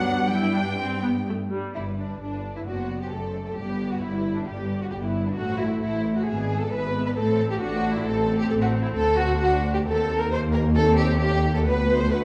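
Up front, a smooth, even violin section carries the second line with a warm vibrato, while a focused, distant first violin section sings the melody from the background. This is a quick, cheerful and spirited classical-period movement for string orchestra in G major, at 133 BPM in 4/4 with a rubato feel, and it is cut from a longer piece. Beneath the violins, a chamber viola section fills in the accompaniment, and a close, lush cello section shares the bass with an expressive double bass section that sits up front. The strings play bowed with vibrato together for the full 12.2 seconds, moving from G through D7/F# into A minor and E7/G#, then touching D7 and Eb5 before settling on D at 11.7 seconds. A wet recital-hall reverb with a 1.7 s decay gives the ensemble a rich, spacious glow.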